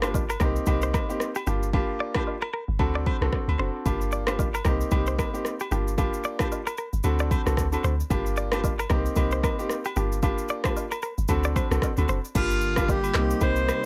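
Lightly reverberant and up-front, this hypnotic, sultry afrobeats excerpt in G minor moves at 113 BPM with a 16th-note swing. A deep house drum kit with an overdriven, deep kick, handclaps, rim click, shaker and crash cymbal drives it alongside a round, dark log drum bass. Agogo bells and woodblock sit in the background, while an intimate, boxy grand piano and a bright, twangy clean electric guitar riff with delay cycle through Cm7, Gm7 and D7. At 12.4 seconds a breathy, whispered alto saxophone takes the melody with vibrato over a smooth, detuned analog pad that pumps with sidechain compression.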